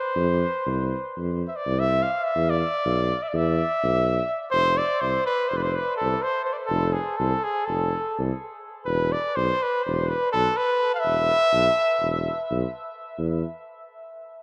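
Balkan folk in 9/8 at 249 BPM, counted in eighths, set in E phrygian dominant with a bittersweet yet fiery mood in this cut from a longer piece. A warm cornet carries the melody between G#4 and F5 in a classical style, with light vibrato and a slapback echo, while a mellow, roomy tuba holds the bass from E1 to F2, also with light vibrato. Both sit in a vast, echoing cathedral reverb; the cornet stops at 12.7 seconds and the tuba at 13.4 seconds.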